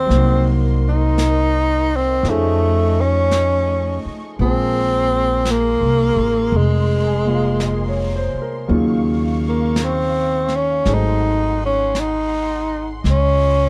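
Tender and late-night, this slow jazz ballad excerpt drifts at 56 BPM in a gently swung 4/4, moving from Cm7b5 and F7alt through Ebm9 and Ab7b9 to settle on Dbmaj9. Up front, a breathy tenor saxophone carries the melody with vibrato and scooped notes, while a woody pizzicato upright bass anchors the low end and a clear concert grand piano with deep bass accompanies beneath them, dropping out at 13.1 seconds. Far in the background, a dark, lush bowed string section holds smooth sustained chords, and an airy, polished brush kit of snare and hi-hat keeps quiet time in a small room under light reverb.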